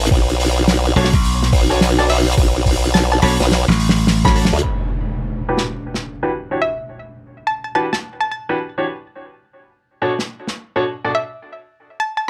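A funky, playful glitch hop cut at 106 BPM in E dorian opens on a drop with an up-front, wobbling formant-sweep bass, a cloth-damped, thuddy acoustic kit with a fat snare, and a gritty, pitched-down electronic kick, soon joined by punchy slap bass, brilliant grand piano stabs with sidechain pumping and tape echo, and a woody, wave-folded pluck melody with chorus, until an electronic impact lands at 4.6 seconds as the bass parts and kick fall away and a filter sweep runs across the piano to the end, set in light reverb.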